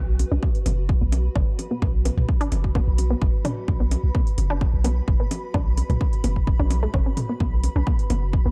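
A dark, dry production opens this short cut from a longer minimal techno track, its cool, hypnotic groove moving in a straight four. A deep, punchy sine sub bass sits up front from the start, its pitch-drop attack breathing with sidechain pumping, while a cloudy granular pad hovers high above with its own built-in reverb, blurred and slowly evolving. Metallic hi-hats and, further back, electronic bongos and toms trailed by delay arrive first, and an up-front, tape-warm electronic kick follows moments later to drive the pulse. The standout is a squelchy, resonant blip pluck riff entering at 0.3 seconds, bright and detuned with chorus and delay, carrying a filter sweep across the whole passage. Everything stays fixed on a single section, letting the pumping bass, pad and pluck build a steady trance-like pull.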